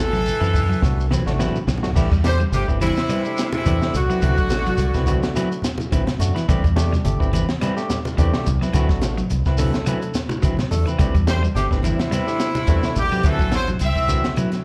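A lightly swung sixteenth-note groove drives this defiant, intense afrobeat cut from a longer piece, built on a compact cocktail drum kit with a high-tuned snare and punchy kick, low-tuned congas set back in a large room, a grainy shekere, and a round, dark dub bass played with the fingers. A clean electric guitar plays arpeggios in the background while a hollow-bodied semi-hollow guitar adds stabs and a barky tine electric piano comps through a combo amp, all circling between D13 and Am9. Up front, a tight, clear horn section carries the melody with an edgy, scooped tenor saxophone beneath it, both dropping out at 5.6 seconds and returning at 11.3 seconds, with slapback echo on the horns and keys and the whole band heard as a live gig through the club's PA.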